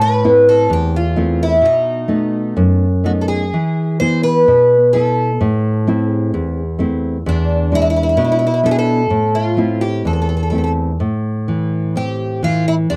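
Mournful and passionate, this fragment of a longer fado piece moves in a rubato 2/4 at around 64 BPM in A minor, tuned slightly low to A4 = 435 Hz, with the harmony passing through Am, B7, E and E7. A picked twelve-string acoustic guitar carries the melody between D4 and C5 with a woody, boxy, shimmering octave-doubled tone and the character of old strings, while a fingerpicked nylon-string guitar supplies dark, full-bodied accompaniment from E2 to B4, both placed up front. The dry, close 1970s-style studio sound keeps the two guitars intimate, and the music shifts into a new section at 11.0 s before the cut at 13.0 s.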